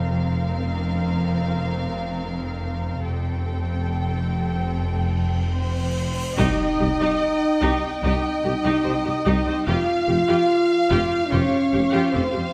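Dark and heroic, this cinematic orchestral film-score excerpt sets a focused, vibrato-laden violin melody over a smooth second violin line, distant lush violas, soft-attack horn chords and a bowed low end of background cellos and double basses, until a huge cymbal swell breaks into an impact at 6.4 s, where a very quiet, mellow tuba joins the bass, the whole ensemble sitting in a moderate concert hall reverb.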